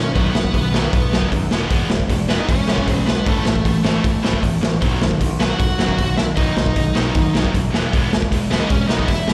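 A dark, high-gain lead guitar carries the melody from the first moment of this rowdy, energetic punk rock fragment, backed by a sludgy riff guitar with overdrive, a tight, bright distorted riff guitar and a growling, picked bass pushed through overdrive, the three guitars tinged with slapback echo, before a gritty, punchy garage drum kit with a medium-tuned snare kicks in up front at 0.2 seconds, the whole gig heard through the venue's PA in a small room with recital-hall reverb over chords moving from B to E and A5, then back to B and E.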